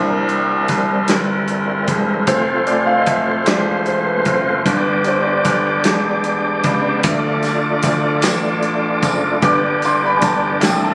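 Captured on a phone in a concert hall with a moderate reverb and compression, this reverent, hopeful slow gospel excerpt in 6/8 at 50 BPM features a dark, woody upright piano soloing over C7, F, G and Dm chords, a gritty, overdriven tonewheel organ holding sustained chords through a slow rotary speaker and chorus vibrato, a bright baby grand piano carrying the bass line with audible action noise, a dry soul drum kit with a tight kick entering at 0.3 seconds, and a jingly tambourine joining in the background at 7.5 seconds.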